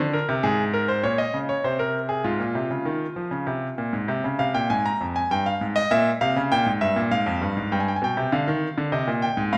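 A bright, brilliant concert grand piano plays alone from the start, delivering a serious, driving baroque-style two-part invention in F minor at 99 BPM in a straight 3/4. Its polished tone sits up front with a deep bass, spanning F2 to Bb5 as the harmony moves from Ab through Fm and C7/Bb before turning to G7 and settling on Cm at 8.9 seconds. A wet recital hall reverb surrounds the instrument in this short cut from a longer piece, which returns to its opening material at 7.7 seconds.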